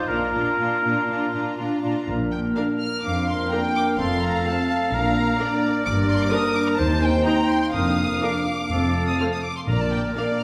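Bathed in the reverberant glow of a concert hall, this cheerful, lively excerpt of a quick classical-period orchestral movement moves with a rubato feel as a lush, vibrato-rich violin section carries the high melody over a second violin line, a distant, roomy oboe, background violas and a bass line from dark cellos and smooth double basses, before a very quiet clarinet, mellow, punchy French horns holding sustained chords, and calf-headed timpani join at 2.1 seconds, the drums returning at 7.7 seconds.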